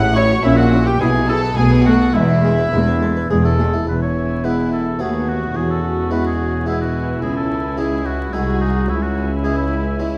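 Brilliant and lively, this baroque-style concerto movement in triple time sets a solo oboe with light vibrato singing the melody over a Flemish-style harpsichord whose plucked, round single set of strings fills in the accompaniment. Two chamber violin sections in gut-string period style sit in the background: a rich, smooth-topped one carries a second line from the start, while a nasal one joins the melody higher up at 0.2 seconds alongside a dark, distant viola section. Rich, reedy cello and double bass sections anchor the bass, all set in a wet recital hall with a dark production and a touch of vinyl crackle, in a cut from a longer piece that moves into a new section at 3.9 seconds.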